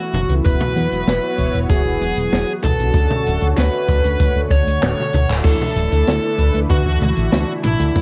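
Moody, driving synthwave cut from a longer piece, where an up-front, bluesy overdriven lead guitar with analog delay carries the melody over a silky analog string pad with ensemble chorus and sidechain pumping, a glossy, nasal chorused synth bass with tube saturation, dark background stabs of mellow synth brass, a boomy kick and an open jazz kit with dark cymbals, a high-tuned snare and handclaps, all through a lightly reverberant, cassette-tinged home recording. The chords move from Esus2 to Dmaj7 at 3 seconds, and a drum fill from 4.8 to 5.5 seconds and a band accent from 5.3 to 5.6 seconds lead into a new section at 5.5 seconds.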